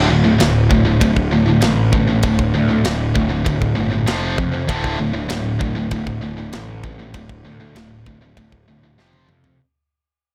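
Heavy metal in D minor at 98 BPM, dark and epic, cut from a longer piece and fading out across its 9.6 seconds. Two bright, distorted guitars, one high-gain, play picked riffs in the background over D5 and F5 power chords, while a growly, fuzz-overdriven picked electric bass sits up front. A tight metal drum kit enters at 0.4 seconds with a tight kick, medium-tuned snare, ride cymbal and toms, closing on a drum fill from 9.0 seconds, all in light reverb.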